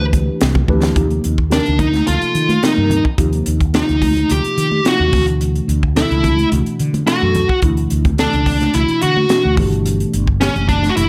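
Soaring and slick, this straight 4/4 electric jazz fusion passage at 108 BPM, cut from a longer piece, sets a dark, overdriven lead guitar with slapback echo up front over a worn, slightly out-of-tune tine electric piano with phaser, a round fretless bass with subtle chorus, a crisp fusion drum kit with a punchy kick and high-tuned snare that opens with a fill at 0.7 seconds, and bright, high-tuned congas in the background, within a light small-room reverb as the chords move from D13sus4 through Ebmaj9 at 1.0 second to Dmaj9 at 5.1 seconds and Gmaj9 at 9.6 seconds.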